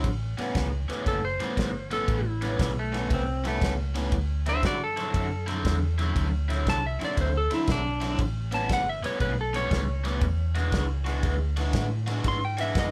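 Laid-back and rollicking, this excerpt of an electric blues shuffle swings along at 118 BPM in A mixolydian, moving through A9, D9 and E9 chords. A cranked stack guitar drives the riff with a bright, overdriven tone colored by phaser, over a round, punchy muted bass and a soul drum kit of tight kick, medium-tuned snare and dark ride cymbal. From 1.1 seconds a clean, twangy lap steel takes the slide melody up front, all captured as a band playing live in one room with light reverb.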